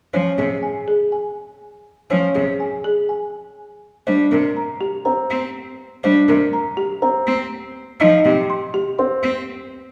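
Set back in a wet recital hall with a 1.7-second reverb tail, this short cut from a longer minimalist classical piece moves at 122 BPM in a straight 4/4, urgent and hypnotic. A dark, mellow concert grand sounds its arpeggios with deep bass, a woody, rustic folk marimba carries the melody on hardwood bars, and a single bowed cello adds clear, focused accompaniment with vibrato, all three up front and playing from 0.1 seconds. The harmony moves from Dbmaj7/C to a rootless Gm at 4.1 seconds, arriving on Cm at 8.0 seconds.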